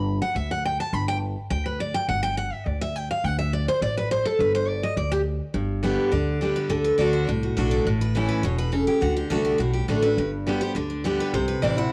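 A lively, rustic bluegrass snippet opens with a bright, full-bodied picked dreadnought guitar playing over a woody, thumpy pizzicato upright bass, both guitars tinted by cassette tape and plate reverb in a homespun room, until at 6.1 s an up-front lead guitar with fresh strings and audible finger squeak enters to carry the melody.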